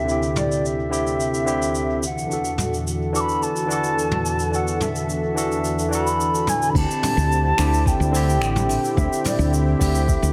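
Steeped in echo and moderate plate reverb, this smooth sunset chillout excerpt floats a mellow, vibrato-laden wooden flute melody with tape echo over a barky tine electric piano with dub echo, a thick, warbling detuned unison pad with chorus, and a distant brushed jazz kit of dark cymbals, finger snaps, hi-hat, shaker and toms, until at 6.7 s a round, punchy fretless bass with lush chorus arrives up front alongside a soft electronic kick.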